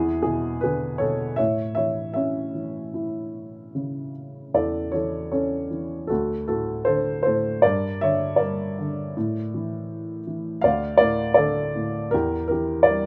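Classical solo piano in a melancholic, wistful mood, this 13.1-second passage cut from a longer piece features a dark, woody upright piano, slightly detuned and up front in a moderate studio ambience, playing lyrically with rubato at about 78 BPM in 4/4 across a range from D2 to F5 through chords moving from E7 to A, D, Gm and on to an Edim at 12.1 seconds.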